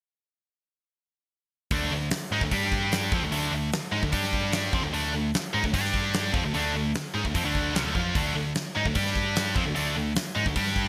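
Energetic and powerful, this hard rock excerpt in straight 4/4 kicks in at 1.7 seconds with a bright, high-gain, double-tracked guitar riff, distorted and up front, shifting between D5 and G5 power chords. Beneath it, a dark, round hollow-body bass adds a punchy low end, while a gated 80s drum kit with a fat snare, punchy kick and hi-hat sounds big, airy and polished. Light reverb and a small room ambience sit within a bright 1980s-style digital production that runs until 10.9 seconds.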